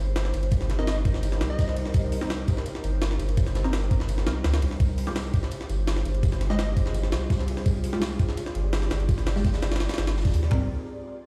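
Drum and bass in a jungle vein, this frenetic, dark passage is cut from a longer piece and sits squarely in a drop, moving from Cm7 to Fmadd9. Up front, a gritty, compressed sampler-style jungle kit with a thumpy kick and high-tuned snare drives the groove with handclaps, hi-hat, ride cymbal and toms, while a deep, round dub sub bass holds the low end. Behind them, a distant, roomy soft-mallet kit adds a fat, high-passed snare, hi-hat and tambourine. An ethereal, airy pad drifts through sustained chords with ensemble chorus, reverb and tremolo, and from 0.8 s a muted, evolving dub chord stab sounds in the background through phaser and dub echo. A punchy, catchy plucky lead briefly sounds a single note with dub echo, returning for a moment at 6.5 s, and the whole mix carries the feel of a big sound system in a bare stone room, dusted with vinyl crackle.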